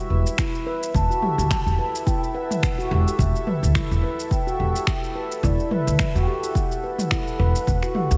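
A dreamy, reverb-soaked hall sound wraps this earthy, mystical organic downtempo passage in E minor at 107 BPM, where a dark, smooth analog pad holds an Emadd9 chord and a ringing, meditative handpan plays arpeggios in tape echo and shimmer reverb, a woody pizzicato upright bass sits up front from 0.1 seconds, a punchy, overdriven electronic kick and a layered deep house kit of finger snaps, shaker and toms lay down a lightly swung groove, and a distant, hollow, end-blown ney carries the mellow melody with vibrato from 0.9 seconds.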